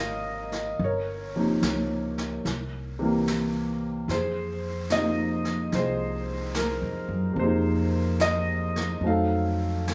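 A slow swung jazz ballad in F minor at 73 BPM, cut from a longer piece, carries a wistful, melancholic mood as brushed drums slip in at 0.5 seconds behind an upright bass played pizzicato with a woody tone. Up front, an intimate concert grand piano accompanies through Db6, Gm7b5, C7 and Fm7 before reaching F7b9 at 9.0 seconds, its deep bass and audible action noise giving a natural, close feel. The drum kit sits distant and roomy in a dry studio space, its medium-tuned snare and hi-hat touched with brushes.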